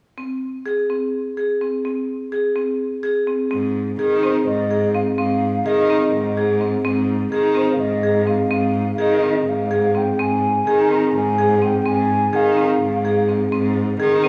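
Set in a lopsided 7/8 with a straight, even pulse, this contemporary chamber piece has a shimmering, playful mood. A marimba struck with hard mallets opens alone at 0.2 s, its bright, percussive arpeggios sitting up front. At 3.5 s a single bowed cello joins on the bass line, rich and focused with vibrato, placed close and forward. The concert flute enters at 4.2 s with the melody, its metal tone pure, mellow and hollow, tongued and touched with vibrato. A recital hall's reverb surrounds the trio and places it further back in the room, and the passage is cut from a longer piece.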